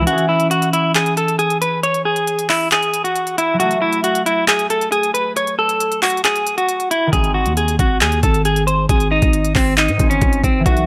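Light reverb and a digital ambience give this short cut from a longer hip hop and trap track a dim, enclosed sound. At 136 BPM in 4/4 with a half-time feel, the mood is menacing and melancholic, moving from C#m to F#m and then to G#. A clean, picked electric guitar carries the melody up front, compressed and filtered so its tone turns soft and dusky, while a fingerpicked concert harp rings beneath it as a quieter, muffled accompaniment. From 0.1 seconds an electronic trap kit drives the piece with a knocking kick, crisp hats and handclaps, its produced, tape-warm sound sitting close. After a break in which the growling 808-style bass drops away, the bass returns at 7.1 seconds on the G# chord, buzzy and sine-based with a fast attack that decays.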